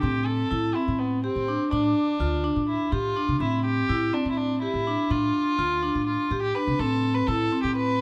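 Ringing, metallic vibraphone arpeggios, played with medium hard mallets and the motor off, run through this hypnotic, restless chamber piece in A minor, moving in 7/8 at 248 BPM in eighths over a cycle of Am7 and G7(no3) that settles on Am. Up front, a single bowed violin with a dark, nasal, reedy gut-string tone in period style carries the melody. A thumpy, woody pizzicato upright bass on gut strings anchors the low end throughout the 8-second extract, all heard through close, detailed microphones in a moderate recital hall reverb.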